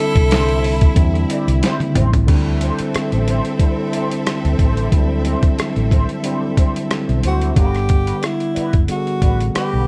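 A dark production with light reverb and digital ambience frames this short cut from a longer piece of lush, smooth 1970s-style soul at 91 BPM in 4/4, with a swung sixteenth-note feel. Up front, a gritty, compressed boom bap sampler-style kit, pitched down, drives the groove with a thumpy kick, medium-tuned snare, rim clicks, hi-hat, toms and crash, and it plays a fill from 1.6 to 2.3 seconds. Beneath it, a round, punchy hollow-body short-scale bass, fingered and amped, sits low and dark, while a clean, direct tine electric piano carries the chords throughout, moving from D9sus4 to Gmaj7 at 7.6 seconds. A bright, intense studio string section bows a vibrato-rich second line until about 7.5 seconds, and a twangy, slightly broken-up electric guitar through a small old amp picks a wah riff in the background. A breathy, close-miked tenor saxophone in jazz style states a brief solo phrase at the opening and returns at 7.3 seconds with warm vibrato.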